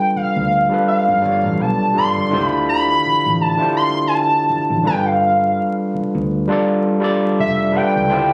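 Caught on a phone in the room, this short cut from a longer sultry, late-night R&B and neo-soul piece carries club reverb and vinyl crackle over a moderate studio ambience, moving at 83 BPM with a gentle sixteenth-note swing over G9, Dm11 and back to G9. Up front, a hollow, woody square lead sings the melody with chorus, phaser, slapback echo, vibrato and portamento, while a barky, gritty tine electric piano played through a combo amp supplies the chords. From 0.2 s, a dark, foam-muted, round and punchy fingered electric bass anchors the low end.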